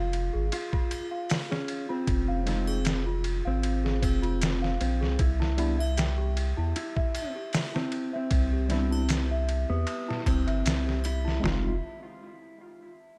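A clean, dark electric guitar melody and a delicate, bell-like celesta, both with tape echo, open this hypnotic, melancholic trip hop excerpt at 77 BPM over a round, deep analog bass and a gritty, pitched-down sampler-style drum kit up front, with triangle and maracas faint in the background and a worn, slightly out-of-tune tine electric piano with harmonic tremolo joining at 2.5 seconds, all in a dry, close sound moving from F minor to C before settling on F minor seventh.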